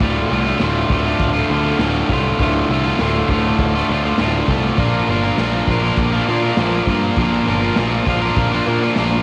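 Garage rock in D minor at 100 BPM, this swaggering, menacing excerpt rides a crunchy, overdriven guitar riff that sits bright, double-tracked and up front, moving from Dm to Bb at 4.8 seconds. Underneath, a picked electric bass adds a direct, warm low end, while a very quiet, saturated drum kit with a punchy kick, medium-tuned snare and crash cymbal sounds gritty and rolled-off in a stone room. The whole take carries the small-room ambience of a home cassette recording and is cut from a longer piece.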